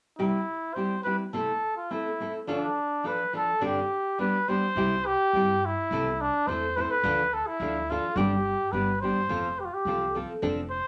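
A warm, smooth-topped trumpet carries a proud, festive mariachi melody up front in classical style over a warm, full-bodied, fingerpicked nylon-string guitar, with a woody pizzicato upright bass joining at 4.8 seconds, all set in a wet studio room in this brief cut from a longer Mexican folk piece.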